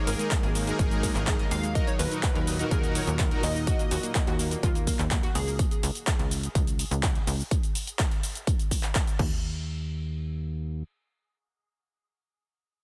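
Progressive house at 125 BPM in Eb minor, emotional and bittersweet, this drop opens on Absus2 moving to Ebm with a catchy, detuned unison lead carrying the melody through dub echo while a very quiet, clear violin section adds a smooth second line until 4.4 seconds. Beneath them, a lush, airy pad, a round, warbling analog pluck playing arpeggios and soft supersaw stabs all pulse with sidechain pumping, the pad and pluck treated with chorus, as a tight, nasal sequencer bass and a punchy, up-front electronic kick drive things alongside a layered dance kit of crash, handclaps, metallic hi-hats and shaker. Once the chords give way at 5.6 seconds, the bass carries on past the drums to 10.8 seconds in a dense, heavily limited, dry mix.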